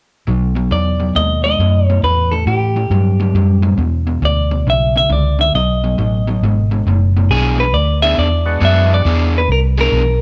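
A dark, round, punchy muted bass sits up front beside a twangy, compressed clean electric guitar melody in this swaggering, rollicking swung blues excerpt at 137 BPM, with an overdriven hollow-body guitar riff underneath, a gritty tonewheel organ with key click and slow rotary speaker appearing briefly at 8.5 seconds, and the band playing live in a moderate stone room over changes from B7 through A5 and E5 to E7.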